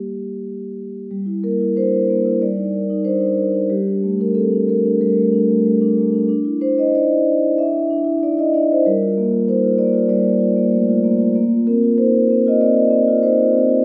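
Contemporary classical music for solo vibraphone, this flowing, reflective excerpt moves freely around 94 BPM in G minor. Played with soft mallets and the motor off, the vibraphone sounds mellow, dark and ringing, sitting up front in a moderate scoring-stage reverb as it spans G3 to E5. Its harmony drifts from Gm through Cm9/G and Dsus2 to a closing Bbadd9 at 11.4 seconds.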